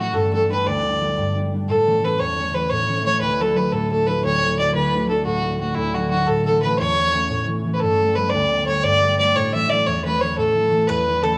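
Lively and cheerful, this short Celtic folk cut from a longer piece moves in 9/8 at 117 BPM in D major, with a single bowed fiddle up front carrying the melody in a rich, biting, earthy voice with light vibrato and a slightly distant quality. A concert harp, also up front, supports it with a warm, ringing, thumb-plucked accompaniment over chords such as G, A, D and Gadd9, and a bright bowl-back mandolin with picked double strings adds a brief second line from 10.9 s. The home cassette recording gives the fiddle, harp and mandolin a tape character, all set in a moderate spring reverb.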